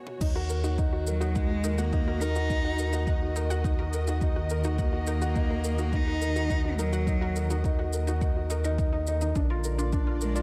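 A straight 4/4 pulse at 105 BPM drives this hypnotic, melancholic piano and strings electronica in Eb minor, where a layered electronic kick and a high-passed deep house kit of crash, shaker and toms join a round, sine-toned sub bass and a dark, woody string section that both pump with sidechain, while a soft, felt-muted upright piano riff echoes through digital delay, a detuned sawtooth unison pluck spins arpeggios in the background with its own pumping and delay, and from 1.1 s a rich, close solo cello carries a bowed vibrato melody over Ebm harmony that turns to Bb near the end of this fragment of a longer piece.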